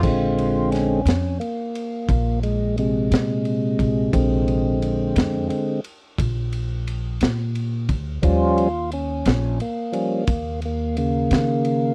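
Swaggering and rollicking, this slow blues excerpt rolls along at 58 BPM with a straight 12/8 feel, with a fat, clean tonewheel organ taking the lead throughout, its sustained chords turning through a slow rotary speaker as the harmony moves from Bb9 to Eb9 at 8.2 seconds. Underneath, a woody pizzicato upright bass and a gritty, saturated breakbeat kit with a punchy kick, high-tuned snare and dark cymbals sit up front. The dry, close 1970s-style studio sound carries only light reverb.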